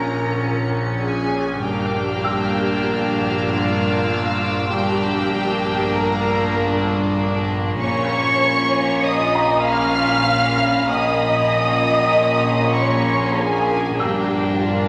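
A wet scoring-stage reverb with a 1.7-second tail surrounds this ominous, tense suspense film cue, and lossy compression artefacts are audible in the mix. Cut from a longer piece, it moves at 97 BPM in a straight 5/4, shifting between Bb minor and G minor. A dark, intimate violin section carries the melody high in its range, bowed sul tasto with light vibrato and a soft attack. A clear, pure violin section sits up front on a lower second line. Beneath them, a woody, lush viola section adds vibrato-tinged accompaniment, while a rich double bass section and a floating cello section hold the low end in the background. A resonant, overtone-sweeping sawtooth and sine drone on Bb sustains underneath with chorus and its own built-in reverb. It is joined by a felt-muted upright piano with audible action noise and a mellow, short sustain, plus a warm, close violin texture that stops at 13.6 seconds.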